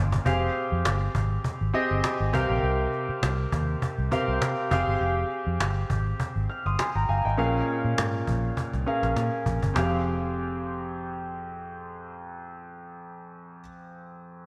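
A lightly swung 101 BPM groove in 4/4 drives this moody, urgent 1980s-style pop excerpt in F minor, where a snappy cajon played with soft hands runs from 0.1 to 9.9 s with fills near the start and from 8.6 to 9.8 s, a dark, round, foam-muted fingered electric bass holds down the low end until 13.6 s, and a clear, intimate concert grand piano with audible action noise and a lush chorus carries chords from Fmadd9 through C7sus4 and Bbm7 until 14.5 s, all set in a lush hall reverb with bright digital production.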